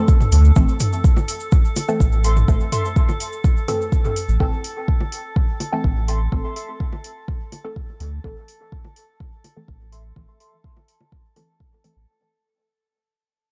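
A muted, detuned dub chord stab opens this nocturnal, hazy dub techno excerpt, its short filtered plucks blurred by phaser and dub echo while a glassy sine texture of drifting overtones hangs behind it, chorused and soaked in its own reverb. Almost at once a deep, layered electronic kick sits up front, joined by metallic analog hi-hats, layered electronic toms and bongos thrown into dub echo, and a grainy acoustic cabasa that drops away at 4.4 seconds. A round sine sub bass holds the low end on A minor, pumping against the kick alongside the texture, toms and bongos. Brief, warbling lo-fi synth keys surface three times, first at 2.2 seconds, their nostalgic, detuned tone low-pass filtered, chorused and echoed. Filter sweeps run across both the stab and the keys throughout, and the whole passage fades out over its twelve seconds in a dry, echo-heavy mix.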